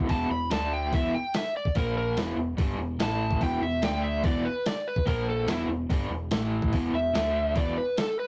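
A rough rehearsal-room recording with warm saturation and a small room's moderate ambience gives this short cut from a longer piece a gritty, heavy feel. It sits between blues rock power trio and southern rock, in a straight 4/4. A crunchy, double-tracked electric guitar, picked and treated with tremolo, drives the low riff from the start to 7.8 seconds, moving through power chords and minor chords. Beneath it, an overdriven fingered bass plays a dark, round line through an amp. Up front, a slide guitar played with fingerpicks carries the overdriven melody high above the riff until 8.3 seconds. A compressed, pitched-down sampler-style kit in boom bap fashion pairs a thumpy kick and medium-tuned snare with hi-hat.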